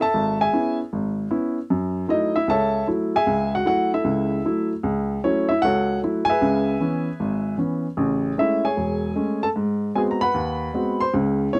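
A swinging 4/4 at 153 BPM carries this late-night, cool solo jazz excerpt in C# minor, where a woody, intimate upright piano sits up front with audible action noise, ranging from E1 to B#5 over light reverb in a dry, close 1970s-style studio sound as it moves through C#m7, F#m7, Amaj7 and a closing G#7#9 at 9.6 seconds.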